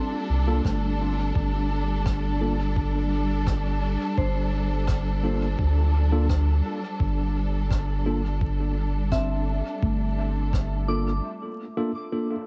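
A lush, bowed string section opens on a Gsus2 chord, its sustained voicings carried with vibrato and portamento from a distant studio space. Alongside it, a soft FM synth bell sits in the background, spinning pure, decaying arpeggios through chorus, dub echo and a filter sweep, with a bed of vinyl crackle underneath. Within the first second a deep, round sub bass arrives up front, joined by clean tine electric piano stabs that trail into dub echo. The drums pair a muffled, thumpy, pitched-down kick with a compressed, tape-tinged character and a quiet, roomy rim click with a rolled-off top, its hits also echoed. The mood is spacious and meditative, an ambient dub groove in straight 4/4 wrapped in light reverb. With the drums already gone, the strings and bass drop away at 11.2 s for a brief break, leaving the bell and electric piano. The piano fades out just before the bell carries this fragment of a longer piece to its cut at 12.5 s.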